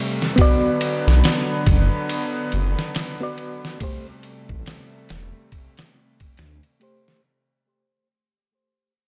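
A deep, rumbling detuned saw bass sits up front from 1.1 s, its saturated, beating tone anchoring this melancholic, brooding trip hop fragment at 70 BPM with a 16th-note swing, moving from Bm to Am7. A compressed, pitched-down sampler-style drum kit with a thumpy kick and gritty, large-room character is joined by a reedy, worn electric piano that is slightly out of tune, lightly overdriven and treated with tremolo and tape echo, while an egg shaker lingers band-limited in the background. Underneath, a dark studio string section holds soft-attack sul tasto chords from the start, coloured by vintage 12-bit sampler grit, and the whole piece fades out under light reverb.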